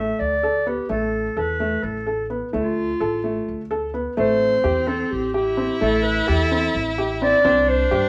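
Set in a straight-feel 7/8, this urgent, hypnotic piece of contemporary chamber music pairs a mellow, roomy clarinet melody with arpeggios from a felt-muted upright piano, intimate and up front with audible action noise, over a woody, dark pizzicato upright bass, while a bowed viola with focused vibrato adds a second line from 4.2 seconds, all heard from further back in a reverberant studio.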